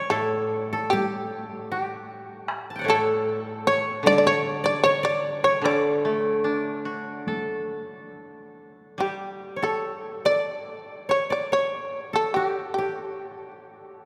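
A long, wet cathedral reverb surrounds this austere, calm excerpt of traditional Japanese chamber music, which moves in 4/4 with a free, rubato feel. Up front, a bright, buzzing fretless shamisen carries the melody with powerful, percussive plectrum plucks. Two kotos played with fingerpicks sit equally close and dry: a mellow, woody one adds a second line, while a warmer one supplies accompaniment in the lower register until 11.5 s. Far in the background, a vintage-sounding, band-limited taiko ensemble struck with hard sticks plays from 0.9 s to 7.5 s. A new section begins at 9.0 s, and the passage is cut from a longer piece.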